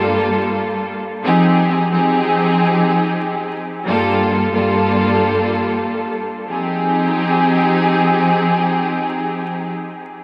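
Vinyl crackle, a light room reverb and a heavy wash of dub echo frame this short hip hop clip, cut from a longer piece, with a tough, moody air. Its only instrument is a lush studio string section, bowed as an ensemble and sitting up front in the mix. The strings carry a smooth, even tone with vibrato and a softened top, filtered and tinted by cassette tape so they feel worn and hazy. They play through from the opening until 9.7 seconds over a swung 4/4 feel, drifting between Gm9 and Fm9 chords before settling on Fm9 for a closing passage that starts at 6.5 seconds.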